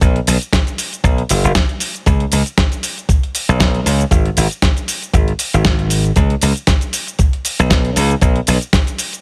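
Sensual and sleek, this short nu-disco excerpt moves at 117 BPM in 4/4 with a light swing on the sixteenths. A glassy, punchy slap bass sits up front in a low register, alongside a thumpy electronic kick and a dusty soul sampler-style kit of hi-hat, shaker and medium-tuned snare, both drum parts gritty, tape-toned and compressed with the sound of a large room. The mix is dry overall, and the drum kit carries on alone briefly after the bass stops at 8.6 seconds and the kick at 8.8 seconds.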